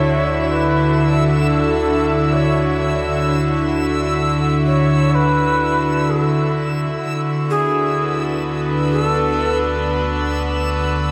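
Luminous and weightless, this ambient passage at 64 BPM in 4/4 is cut from a longer piece and rests on a single Bm7/D chord. An airy, bamboo-toned shakuhachi carries the melody with vibrato and a tongued chiff through a diffuse ambient delay until 9.8 s, while an up-front chamber string section with a gut-string, period-style tone holds sustained chords beneath a low-pass filter. A round sub bass fades in on D2 alongside a very quiet, tense sawtooth drone and a reversed, detuned granular texture swelling high on E6, the whole piece set in a wet concert hall reverb.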